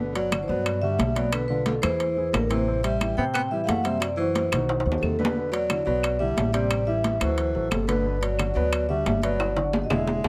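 A straight 4/4 Afro-Cuban jazz groove, sunny and lively, is set by high-tuned, ringing congas in the background, dry metal-shell timbales and woody claves entering just after the start, while a full, metallic vibraphone with fast motor vibrato carries the melody over a soft-attack tenor saxophone second line with vibrato, a warm grand piano with deep bass, and an up-front pizzicato upright bass on steel strings, with drum fills at 4.7 and 9.4 seconds in this close, detailed snippet with light reverb.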